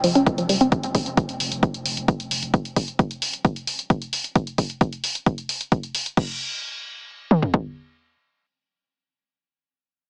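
Industrial and hypnotic, this driving peak-time techno excerpt runs at 132 BPM in a straight 4/4, tuned slightly sharp to A4 = 441 Hz. A woody, wave-folded pluck opens with a dark, percussive riff between Eb3 and Db4, its organic triangle-and-sine tone layered with noise, a filter sweep and a moving notch, thickened by chorus, pumped by sidechain and trailed by dub echo, though it lasts only until 0.7 seconds. Beneath it, a deep, thick sub bass holds F1, saturated and overdriven through a low-pass filter and also pumping with the sidechain, until about 2.5 seconds. A punchy analog drum machine with a tape-warm, up-front character carries crash cymbal and hi-hat until 6.3 seconds, while its kick drum and toms run from 0.3 to 7.6 seconds. The whole mix sits in light reverb with a heavily compressed, small-speaker radio sound, shifting into a new section at 6.2 seconds.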